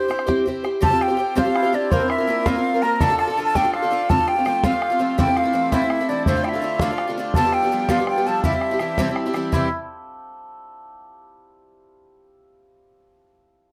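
An airy wooden flute with soft-edged vibrato carries the melody of this lively, cheerful Celtic jig in 6/8 at 110 BPM in C mixolydian, over a boxy, octave-doubled picked twelve-string guitar placed up front and a boomy, close bodhran, while a shimmering hammered dulcimer adds a ringing second line from 0.8 seconds and rings on alone after the other parts stop at 9.7 seconds, set in a small room with moderate reverb.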